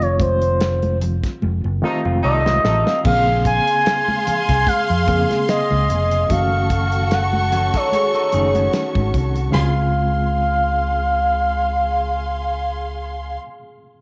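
This is a lush, romantic 1970s-style soul excerpt cut from a longer piece, moving at an unhurried pace with a gentle sixteenth-note swing. It opens with an expressive, up-front synth lead soloing over a reedy, slightly out-of-tune electric piano with fast tremolo, a round, punchy fingered bass, a damped drum kit with dark cymbals and a rolled-off top, and bright, close congas sitting in the background. During a drum fill, a clear, distant horn section adds brief stabs and a lo-fi, slightly broken-up electric guitar begins a fingered riff. From 3.1 seconds a bowed, symphonic violin section with smooth vibrato carries a second line as the chords move from F7 through Bbm9 and Gbm6. The drums, congas and guitar fall away near the 10-second mark, leaving the lead, strings, bass and electric piano to settle on Dbmaj7, all bathed in a wet spring reverb.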